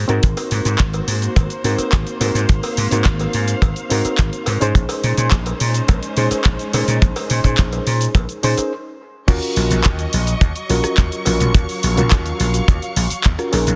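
A dry, tight acoustic kick drum sits up front with a touch of soft clipping, anchoring this groovy, sensual nu-disco piece at 106 BPM in a straight 4/4. A punchy, amped vintage slap bass shares the foreground, while a layered electronic house drum kit adds overdriven crash, handclaps, rim clicks, shaker and bright hi-hats, with a cowbell tucked in the background. A reedy, worn electric piano, slightly out of tune and heard through its built-in speakers, plays accompaniment with dub echo and sidechain pumping. Alongside it, a lush, bowed studio string section holds sustained chords with expressive vibrato and a smooth top, also carrying sidechain pumping. The harmony moves from Ab9 to Bbm11, then a brief stop at 8.7 seconds gives way to a drop on Ebm7 at 9.3 seconds. The whole recording has a small-room ambience and a dense, heavily limited modern master, and it is cut from a longer piece.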